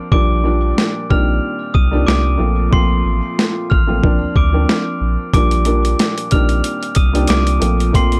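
A compressed, pitched-down sampler-style drum kit sits up front in this soulful, nostalgic boom-bap hip-hop excerpt at 92 BPM in Bb major, its thumpy kick and high-tuned snare joined by hi-hat with a light 16th-note swing. A dark, woody, slightly detuned upright piano opens at 0.0 seconds with vintage-toned accompaniment over chords moving from Bb6 through Cmadd9/Bb to F. Meanwhile, a round sine sub bass holds the low end, and a bright glockenspiel struck with brass mallets carries the sparkling, bell-like melody through tape echo, all set in a dry, gritty hardware sound with transformer saturation.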